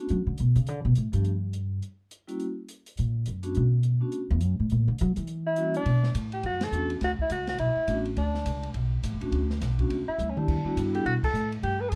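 A woody, thumpy upright bass opens this swinging, late-night jazz cut in B minor at a brisk 208 BPM, while ringing vibraphone and an airy drum kit with dark cymbals and a boomy kick play beneath it. At 5.5 seconds a punchy, forceful alto saxophone with vibrato and scooped notes takes the melody, with a band accent at 6.6 seconds and a drum fill at 10.2 seconds, all in a dark production with light reverb.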